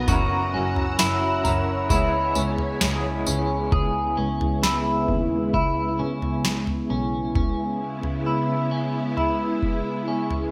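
Haunting and hazy, this dream pop excerpt floats on a silky, warbling string machine with a slow attack and ensemble chorus, while a clean, picked electric guitar plays chorused, delayed arpeggios up front. A second electric guitar, slightly broken-up and lo-fi through a small old amp with tremolo and chorus, plays accompaniment until 4.2 seconds, and an earthy bowed double bass with light vibrato and an airy tone holds the low end until 7.3 seconds. A booming, overdriven analog drum machine with a deep kick, crisp snare, tambourine and toms sits up front in gated reverb, all inside a lush hall reverb with bright 1980s-style digital production over chords moving from F#7 to C#m7.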